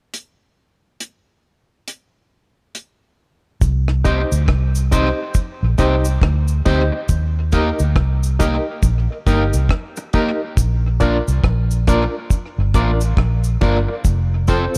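The sound is echo-heavy and set in a small room, with a dry, dark drum kit and a round, punchy bass sitting up front. This roots reggae cut, taken from a longer piece, has a hypnotic, serious mood and a swung sixteenth-note feel. The deep drum kit opens alone with hi-hat, a tight kick and rim clicks, its top end rolled off. At 3.6 seconds the foam-muted, amped fingered bass arrives with a quiet cabasa in the background, and the harmony moves through C minor, E-flat, B-flat and F. From 4.0 seconds a picked, twangy electric guitar at the edge of break-up adds accompaniment through spring reverb and tape echo. Alongside it, a barky, reedy electric piano plays bright stabs with light overdrive and a medium tremolo.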